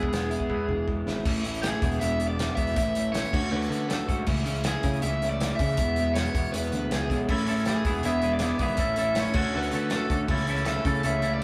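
Indie rock at 159 BPM in A major, this upbeat, jangly clip from a longer piece moves with a straight 4/4 drive and the feel of a band playing live in one room. A loose acoustic drum kit sits up front with a tight kick, a medium-tuned snare and a rolled-off top, and a drum fill at 0.5 s leads into the main section at 1.3 s. Two picked, compressed electric guitars carry the core: one at the edge of break-up plays a riff from low E2 up to F#4, while a dark, overdriven guitar takes the melody between G#4 and E5, both with spring reverb. A fuzzy, overdriven picked bass with a round tone anchors the low end, and a clean, twangy fingered guitar adds its own riff at the start and returns from 7.3 s. The chords cycle through E, A, Dmaj7 and A/C#, all set in a moderate studio reverb.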